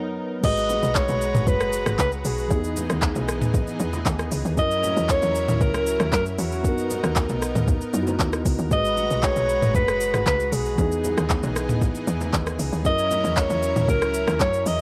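Late-night and hypnotic, this amapiano excerpt moves at 116 BPM in G# minor, cut from a longer piece. A breathy alto saxophone carries the melody up front from the very start, mellow with light vibrato and a smooth top, its line trailed by digital delay, while a clean tine electric piano and a lush, detuned unison pad fill in the harmony, the pad thickened by chorus and breathing with sidechain pumping. At 0.4 seconds the drop arrives as a woody, punchy log drum bass and an electronic R&B drum kit join in, the kit pairing a soft kick with metallic hats, handclaps, rim clicks, shaker, toms and crash cymbal, all pushed through overdrive. Very quiet congas and bongos add a bright, vintage, band-limited texture beneath, falling away at 14.5 seconds. The chords cycle through G#m9, Emaj7, F#7 and Bmaj7, and a light reverb gives the mix a soft sense of space.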